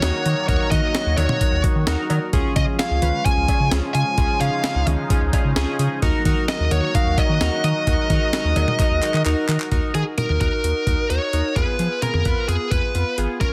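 Driving and melancholic, this synth-pop cut at 130 BPM in Eb minor puts a distorted, high-gain lead guitar with digital delay up front over chorused analog keys with ring-modulated, filter-swept tones, a detuned, resonant pad that sits in the background until 9.7 seconds, a deep, round analog bass, and a gritty, compressed breakbeat kit with a thumpy kick, high-tuned snare, cowbell and handclaps, with a keys fill at 5.1 seconds and a drum fill leading into a new section at 9.7 seconds, all in a dense, heavily limited mix with light reverb.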